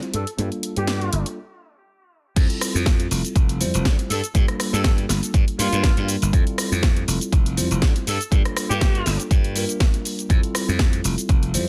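A glassy, growly slap bass anchors this joyful, sunny filtered disco house excerpt at 121 BPM in F major, pumping under a low-pass filter alongside a bell-like tine electric piano with phaser, a distant, roomy horn section carrying the melody with light vibrato, and a tape-warm house kit with cracking snare, cabasa, hats, rim click and crash, before a punchy electronic kick enters at 2.4 seconds as a filter sweep and break give way to the drop over alternating Gm7 and Fmaj7 chords in a dry, reverb-light mix.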